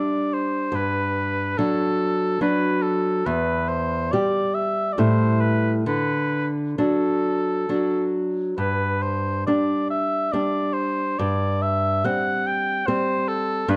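A clear oboe with light vibrato and a soft attack sings a tender melody over a small, dark-toned nylon-string guitar that is fingerpicked beneath it, both up front from the very start. The romantic duo moves in a flexible, rubato triple metre, its serene mood colored by harmonies such as Em, Am7 and D. A moderate recital-hall reverb gives this brief excerpt a gentle, enveloping glow.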